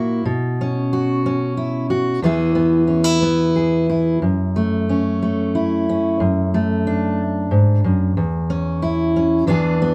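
In a loose, rubato 3/4 at about 92 BPM, this gentle, pastoral folk excerpt features a solo fingerpicked steel-string acoustic guitar, full-bodied with a dreadnought depth, ranging from E2 to G#4 across its 9.9 seconds. The chords move from Bsus2 through E, F#m and D/F# before settling on C#m/E at 8.2 seconds. A wet studio reverb places the listener further back in the room, though the guitar itself sits up front.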